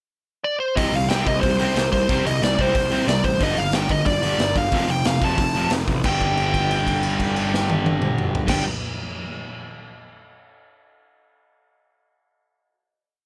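Urgent and aggressive, this short punk rock piece opens at 0.4 seconds with a nasal lead guitar through a parked wah playing hook phrases up front, joined at 0.8 seconds by a raw garage drum kit with a boomy kick and gritty, pumping stone-room sound driving a fast punk groove, a growly fuzz bass pushing eighth notes, and two background guitars, one dark and sludgy, the other bright and overdriven, chugging palm-muted eighth notes, before settling on a held final chord from 6.0 seconds under light reverb.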